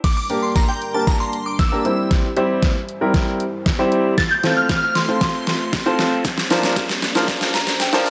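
An up-front, overdriven pop drum kit, with a knocking kick and deep snare among crash, hi-hat and shaker, plays a fill through this upbeat, summery dance-pop build-up under a filter sweep. A polished baby grand piano with long sustain and a mellow, retro pulse-width pad in the background both pump with the sidechain, while a dreamy FM bell with ensemble chorus, phaser and analog delay carries the high melody until 5.9 seconds, and a very quiet riser enters at 2.8 seconds. The piano adds its own fill at 7.3 seconds in this gritty, dry, lightly reverberant recording, which is cut from a longer piece.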